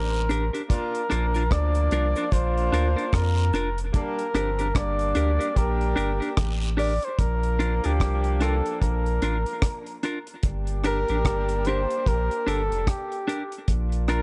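Roots reggae with a laid-back, uplifting mood, heard in a short cut from a longer piece that moves with a relaxed, swung sixteenth-note lilt. An up-front flugelhorn carries the melody with light vibrato and a smooth top, its lines trailed by tape echo, while a mellow, tight horn section plays a second line beneath it, tinged with tube saturation and the same echo. A round, sine-like sub bass sits deep and up front with a fast attack and sustained notes, anchoring a dry, dark drum kit of tight kick, hi-hat and rim click. A clean, picked electric guitar with a compressed, scooped tone enters at 0.3 seconds as accompaniment, also washed in tape echo, and a faint, saturated layer of cabasa and guiro drops out at 7.0 seconds. The mix is echo-heavy and softly rounded at the top, set in light studio reverb as the harmony sways between Gm and Bb.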